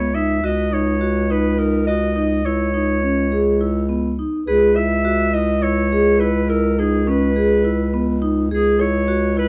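From the first moment, a distant, roomy clarinet carries a pensive, restless melody over ringing, metallic vibraphone arpeggios struck with medium hard mallets, while a mellow bass clarinet holds a low C#. All three play together across this 9.5-second fragment of a longer contemporary chamber piece, which moves in 7/8 at 208 BPM counted in eighths, in C# dorian. The harmony passes from D#m/C# to C#m and reaches C#m7 at 4.5 seconds as a new section begins, with the vibraphone sounding boxy within a dark, warm production touched by light reverb.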